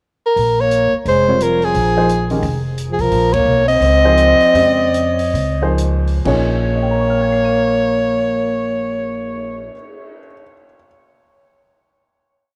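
A subtone soprano saxophone with light vibrato and tape echo carries a motif-based melody through this short, searching and hypnotic modal jazz piece in Bb dorian, which swings in 4/4 between 122 and 175 BPM and slows from 3.1 seconds, with a band accent at 3.3 seconds, into a final chord from 6.3 seconds; it is backed by a whispered, breathy trombone harmony line mostly in thirds with scooped notes, a woody pizzicato upright bass in two-feel, syncopated quartal comping from an intimate baby grand piano with audible action noise, and a quiet open drum kit keeping time on the hi-hat with dark cymbals, a boomy kick and a cymbal swell, all in a small room with light reverb.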